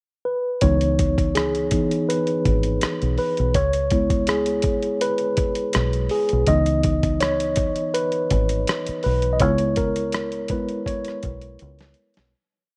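A light reverb gives this short, complete neo-soul and R&B piece a soft late-night glow, with the electric piano and drums placed up front. A mellow tine electric piano opens with a brief pickup, then takes a solo role over pushed chord rhythms in spread voicings decorated with grace notes. A dark, round, foam-muted fingered electric bass and a gritty, compressed, sampler-style drum kit join at 0.6 seconds. The bass plays a laid-back line with muted ghost notes, while the drums lay down a slow sixteenth-note groove built on a thumpy kick, a medium-tuned snare, hi-hat and rim click. The harmony moves unhurriedly between C#m9 and E6, keeping the mood soulful. A fade-out begins at 9.4 seconds, and a drum fill arrives at 11.6 seconds as the piece closes.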